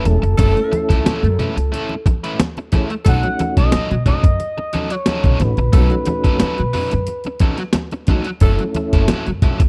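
Funky and hypnotic, this short funk excerpt moves at 90 BPM in a straight 4/4, cut from a longer piece and sitting on a rootless F#m7 that shifts to B9 at 3.1 seconds before returning at 8.4 seconds. A sampler-style breakbeat kit sits up front with a gritty, compressed sound, a thumpy kick and a medium-tuned snare under the hi-hat, while a woody, dark upright bass plays pizzicato down low. Low-tuned congas ring in the background, and a biting overdriven guitar, electric and picked, fills in the accompaniment with a harmonic tremolo. A mellow tonewheel organ adds round, clean stabs through chorus vibrato and a slow rotary speaker. The melody comes from a smooth, expressive synth lead blending sawtooth and triangle tones with a fast attack, sustained notes, vibrato and chorus, joined from 0.4 seconds by a raspy, breathy tenor saxophone that growls on a single A4 as a jazz-style second line. 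The whole has the dry, close sound of a 1970s-style studio session, touched by digital ambience.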